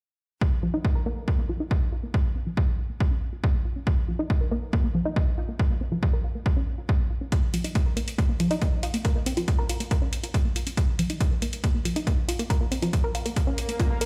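A punchy, up-front electronic kick drives this emotional uplifting trance excerpt beneath tight, detuned sawtooth synth arpeggios with a mellow filter pluck, chorus, sidechain pumping and dub echo, while metallic hi-hats join at 7.3 seconds and an electronic swell enters at 13.5 seconds, all heard as if played through a big sound system in a bare stone room.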